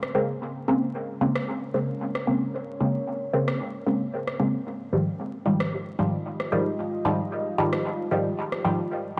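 Dub techno at 113 BPM in Bb minor, meditative and hazy, cut from a longer piece, where up-front, muted sawtooth chord stabs with chorus, phaser and dub echo move from Bbm9 to Fm9 at 4.7 seconds over a deep, moody, detuned ambient pad under a filter sweep and an analog electronic rim click re-recorded in a large room, all in a dry, gritty hardware recording with vinyl crackle.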